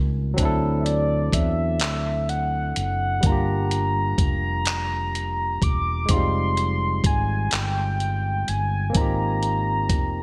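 A mellow, horn-like synth lead with a soft attack, vibrato, chorus and delay carries the yearning, late-night melody of this slow six-eight R&B excerpt in F dorian at 42 BPM, entering at 0.8 seconds over a barky tine electric piano, a round, dark fretless bass and a gritty, thumpy sampler-style kit of kick, hi-hat and handclaps with gated reverb, as the chords move from D7 through Gm7 and Fm9 to Abmaj13 in a bright 1980s-style digital production.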